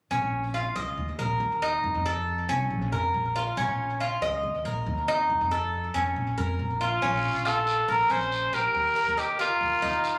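A breathy trumpet carries the melody in this short cut from a longer Cuban son and guajira piece, entering at 6.8 seconds with a whispered, intimate tone, gentle vibrato and a soft attack, sitting up front with plate reverb. Beneath it, the Cuban tres picks arpeggios from the start, its doubled strings giving a metallic, octave-shimmering bite colored by tape echo. An upright bass plays pizzicato on gut strings throughout, woody, dark and thumpy in the low end. A raspy guiro joins at 7.0 seconds as the second section begins, adding a small-room texture. The straight 4/4 groove moves at 139 BPM in Bb harmonic minor, cycling through Bbm, Eb5 and F7 before reaching an Ebadd9, and the mood is nostalgic and warm. The sound has the feel of a phone recording in a club, with a wet room reverb and compression.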